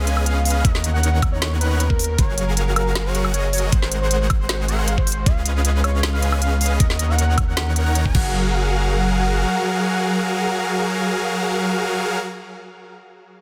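This bright, playful future bass drop, cut from a longer piece in F# major at 156 BPM with a half-time feel, opens on huge, detuned supersaw chords pumping through digital delay, a velvety synth lead carrying the melody with chorus, vibrato and delay, very quiet bowed symphonic strings holding sustained chords, and a deep sine 808 bass thickened by tube saturation; a trap kit of woody, softly clipped snare, crisp hats, crash and woodblock enters at 0.1 seconds and a knocking, up-front electronic kick at 0.6 seconds, both dropping out at 8.2 seconds, as the harmony cycles through C#7, Bmaj7/D#, F#maj9 and G#7 beneath a dense, heavily limited master.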